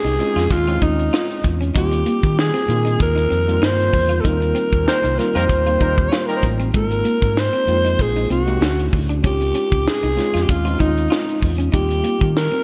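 A breathy, raspy alto saxophone with a smooth top and delay carries the melody up front in this breezy, glossy slice of polished 1980s jazz-funk pop, over a worn, slightly out-of-tune tine electric piano with ensemble chorus, a dark, lush-chorused guitar riff at the edge of break-up in the background, a punchy overdriven fingered bass and a tight funk kit with a high-tuned snare and gated reverb, while a distant horn section doubled in octaves adds a brief second line from 4.9 to 6.5 seconds during a band accent, all set in bright digital production with small-room ambience.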